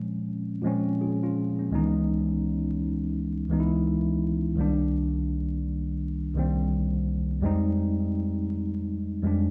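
Nostalgic and reflective, this short hip hop excerpt moves at an unhurried 84 BPM in 4/4, with a lazy swing on the sixteenths and a dark C phrygian colour. A lone tine electric piano carries the whole passage, playing from 0.0 to 9.5 seconds across a span from C2 up to Ab4. Its tone is worn and slightly out of tune yet clean and direct, sitting up front with a low-pass filter softening its top end. The harmony drifts through lush ninth chords, opening on Bbm9 and Dbm9 before shifting at 4.6 seconds to Cm9 and then Fm9 in the second half. The sound is close and dry, with little reverb, and a layer of vinyl crackle lends the faded character of an old record.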